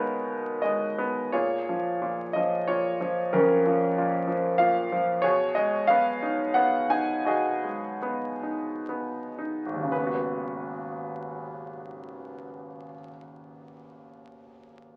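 Heard through the crackle of a very old 78 rpm record and a wet studio reverb, this brief cut from a longer classical piece presents a lyrical solo concert grand piano in a brooding, moody G# dorian, moving in a rubato 3/4 that drifts between 57 and 97 BPM. The piano sits present and up front, brilliant yet worn, with a deep bass reaching down to G#1. It opens with a short fill from 0.3 seconds, moves onto A#m7 at 1.3 seconds, slows from 5.2 seconds as the harmony shifts to G#m/B, and settles onto G#m7 at 9.9 seconds.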